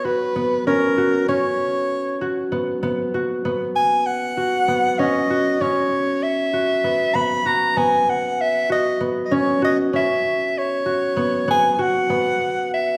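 Hopeful and playful, this contemporary instrumental excerpt moves in a straight 7/8 at 194 BPM over a single Bsus2 chord, with a breathy, close-miked soprano saxophone carrying a jazz-style solo melody with vibrato and a soft attack, while an up-front concert harp supplies warm, ringing fingerpicked arpeggios, both sounding through the wet reverb of a recital hall.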